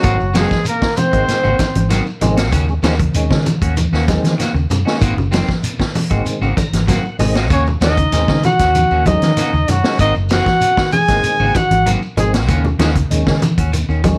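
Afrobeat excerpt at 96 BPM in Eb dorian, defiant and funky, where a scooped, vibrato-tinged trumpet and a clear trombone state a brief horn line at 0.0 seconds and return at 7.5 seconds over a fat, key-clicking tonewheel organ with overdrive and slow rotary swirl (which plays a fill at 6.3 seconds), twangy slightly broken-up guitar stabs, clean picked guitar arpeggios under lush chorus, a dark, round, foam-muted bass, a punchy vintage drum kit, bright low-tuned congas and a grainy, distant shekere, all alternating between Ab9 and Ebm7 in a small, lightly reverberant room.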